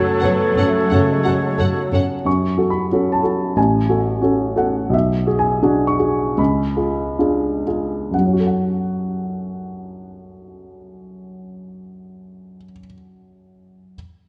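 In a rubato 4/4 that slows from 0.9 to 8.1 seconds, this brooding, tragic romantic excerpt for piano and orchestra opens with the intimate, up-front baby grand piano, its action noise audible, framed by a brief orchestral gesture of mellow clarinet, airy flutes, oboe, distant violas, a background bassoon, dark French horns, faint cellos and very quiet timpani. An instant later a clear studio violin section joins on the melody, with a rich chamber violin section behind it and a close double bass section. Once the orchestra falls away, the piano carries the melody alone to 14.0 seconds in a dark, reverberant concert hall.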